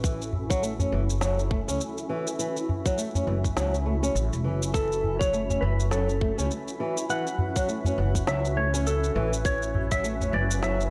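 Organic downtempo in F# minor at 102 BPM with a 16th-note swing, this warm, mystical piece cut from a longer work rests on an F#m7 chord as a cloudy, wave-folded granular pad with built-in reverb and sidechain pumping sustains above a boxy, thumb-plucked flamenco guitar arpeggio with digital delay, a woody pizzicato upright bass up front, a tight tape-warm electronic kick, an electronic shaker and snare re-recorded in a large room, and a small acoustic udu, before a dark, clean lap steel slide melody with delay enters at 4.7 seconds.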